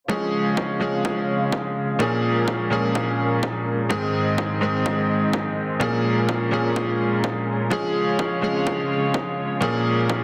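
Anthemic and emotional, this festival progressive house excerpt moves at 126 BPM in a straight 4/4, with all three parts playing together from 0.1 to 10.2 seconds. A bright grand piano sits up front as accompaniment, its brilliant, slightly worn tone and short sustain shaped by sidechain pumping and a digital delay. Behind it, a distant chamber string section holds sustained chords with a reedy, gut-string, period-style character and light vibrato, also pumping against the beat while a low-pass filter sweep runs across its whole span. A punchy, layered electronic kick drives the groove, overdriven and re-recorded in a large room, with its body and room sound both high-pass filtered. The harmony cycles through Db, Bbm7 and Ab, and a lush hall reverb with a 2.1-second decay surrounds a dense, heavily limited modern master.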